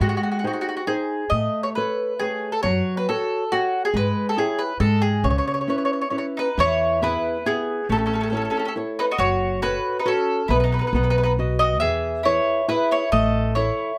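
A picked mandolin opens this wistful, romantic Italian folk serenade at 0.0 seconds, its round, double-string tone carrying the melody up front, joined at once by a small, fingerpicked nylon-string guitar and a woody, thumpy pizzicato upright bass. The music moves in 3/4 at 138 BPM with a rubato feel, beginning in C# minor. The harmony drifts through Aadd9, F#m and C#m/G#, pauses briefly on a chordless beat, then settles on C#m7. At 6.4 seconds a second mandolin enters with a softer, lower line beneath the first, and at 6.6 seconds the piece brightens into E major. The new section cycles through E, A, F#m and B, giving it a tender, sunlit lift. A moderate studio ambience lends the acoustic ensemble a close, intimate space in this short passage cut from a longer performance.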